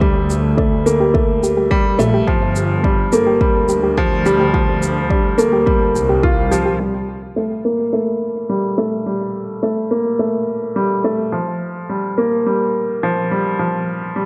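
A clear, worn grand piano riff sits up front in this intimate, cinematic piano-and-strings electronica piece in G minor at 106 BPM, alongside soft, round, detuned pluck arpeggios with chorus and delay, a lush bowed double bass section with vibrato and sidechain pumping, an overdriven deep electronic kick and a produced shaker, until the piano carries on alone from 6.8 s under a filter sweep through 14.3 s, all set in a concert hall reverb over chords moving from Gmadd9 and Gm11 to a rootless Ebadd9.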